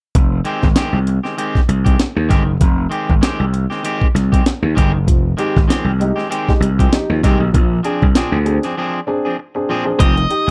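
An overdriven, growly slap bass sits up front in this hypnotic, driving funk excerpt at 97 BPM in F dorian, riding a compressed, pitched-up breakbeat kit with a thumpy kick and a twangy, slightly broken-up electric guitar over Fm9 and Bb9, while a woody upright piano with audible action noise adds stabs from 5.1 seconds and, after a break at 8.8 seconds, a dark octave-fuzz lead guitar enters at 10.0 seconds, captured in a dry, close 1970s-style studio sound.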